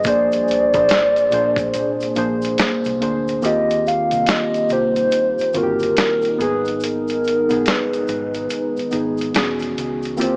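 Mellow and dreamy, this lo-fi hip hop excerpt in Eb major drifts at 71 BPM with a swung feel, as a hollow, woody clarinet-like synth lead with vibrato sings over muted felt-like synth keys, a deep, moody ambient pad, a round, foam-muted electric bass, a very quiet grainy tube shaker and a gritty, thumpy sampler-style drum kit that breaks from 1.7 to 3.4 seconds and then drops its kick from 3.4 seconds on, all through a cassette-tape, small-speaker sound with light reverb.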